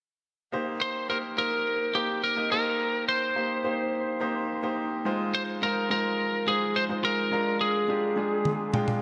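A lightly driven electric lead guitar carries the melody in this short cut from a longer 1980s-style pop piece, its bright, twangy, slightly broken-up tone picked and compressed up front, with a delay trailing its notes between G4 and C5 from 0.8 seconds. A clear baby grand piano supplies the accompaniment from 0.5 seconds, intimate and natural with audible action noise and a long sustain, moving through Cm7, Fm7 and Bb7 in C minor. At a straight 106 BPM in 4/4, the mood is urgent and dramatic. At 8.5 seconds, acoustic toms enter with a drum fill, airy and polished, bathed in gated reverb. The whole sits in a lush hall reverb with studio ambience, and the bright 1980s-style digital production shows some lossy compression artefacts.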